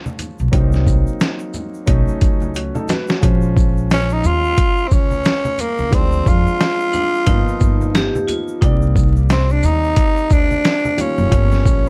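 Jazz-hop at 89 BPM with a swung 16th-note feel and a cool, nocturnal mood, built on muffled, overdriven sampler-style drums with a thumpy kick, a woody, growly pizzicato upright bass, an intimate upright piano with audible action noise comping through extended jazz chords, and congas and tube shaker ringing in the background, while a breathy, raspy tenor saxophone takes the melody up front from 3.9 seconds and a metallic vibraphone with hard mallets adds a brief second line from 6.9 to 9.1 seconds, set in a dark, dry production dusted with vinyl crackle.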